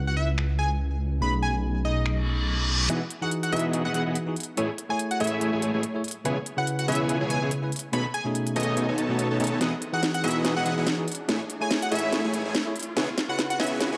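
A huge, compressed supersaw riff with vibrato and a low-pass filter surges up front at 2.9 s, where a build-up begins over this dreamy, lush future bass excerpt at 143 BPM in a swung half-time feel, cycling through C#m7, B13, Emaj9 and Amaj7. Around it, a bell-like tine electric piano with delay and a punchy, catchy plucky unison lead with delay carry the harmony and the high melody, while a thick detuned saw bass with chorus and tube saturation sits in the background. A crisp trap kit of snaps, hi-hats and a sharp snare stays up front, a very quiet reverse cymbal and riser enters at 2.2 s, and a drum fill runs from 9.6 s, all within a moderate hall reverb.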